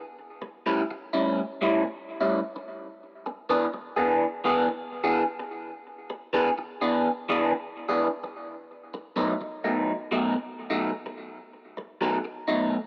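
Bathed in a moderate plate reverb, this lo-fi, gritty and soulful blues fragment at 84 BPM swings in E mixolydian as a slightly broken-up electric guitar through a small old amp takes an up-front picked solo from 0.4 seconds, colored by phaser and tape echo, over changes moving from A7 to E7 and then B7.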